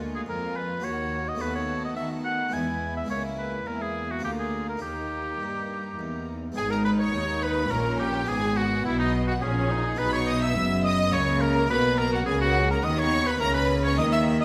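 A clear, up-front solo oboe carries the melody in this stormy, dramatic baroque-style concerto movement in 3/4, its lightly vibrato line riding over a chamber string ensemble. The upper violins share the melody with a rich, focused, bowed tone, while a second violin section, more distant and in the background, traces a second line beneath them. A smooth, even viola section and a French-style harpsichord, full and plucked on two sets of strings, fill out the accompaniment from the background, and a rich cello section anchors the bass. At 6.6 seconds the music moves into a new section centred on G# minor, and an intense, distant double bass section joins the cellos to deepen the low end. The whole ensemble sits in a wet recital-hall reverb, giving this fragment of a longer piece a resonant, spacious sound.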